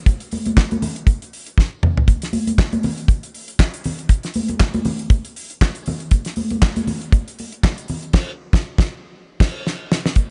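A dry, close recording with a dark top end carries this joyful, danceable disco excerpt at 119 BPM in 4/4, with a light 16th-note swing. A damped 70s acoustic drum kit sits up front, its fat snare and tight kick joined by hi-hat, handclaps, toms and crash cymbal, while bright, high-tuned congas with a thin skin ring out in their own live room, also up front. Drum fills arrive at 1.6 and 9.7 seconds, and a band accent lands from 8.1 seconds to the close.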